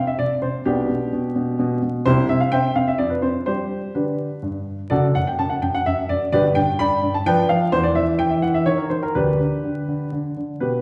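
A solo baby grand piano opens this elegant, graceful classical-period sonatina, playing in 3/4 at 127 BPM with a straight feel, moving through C and G harmonies before settling into G major from 4.9 s. The piano's open, short-sustain tone sits up front and spans F#1 to B5, while a wet recital-hall reverb with an RT60 of 1.3 s places the listener further back in the room. A layer of vinyl crackle lends an aged patina to this short passage cut from a longer piece.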